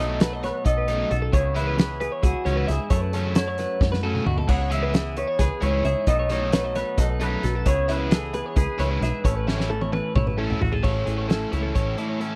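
A dry, close recording with a 1970s studio feel frames this bright, playful cut from a longer math rock and midwest emo piece, moving at 265 BPM in eighths over a straight 7/8 in A major. An electric guitar through a small old amp carries the melody with a lo-fi, slightly broken-up twang and a slapback echo until 10.3 seconds. Beneath it, a clean, compressed twangy electric guitar plays accompaniment, a bright, clean twelve-string electric guitar picks arpeggios through spring reverb, and a biting, double-tracked overdriven guitar drives a riff with its own spring reverb. A dark, round, foam-muted overdriven bass sits up front. A loose indie drum kit with a fat snare and tight kick adds crash, splash, hi-hat and toms, with fills at 3.8 and 9.5 seconds, as the chords move through B7, C#m7 and F#m7 before landing on A and a brief closing section.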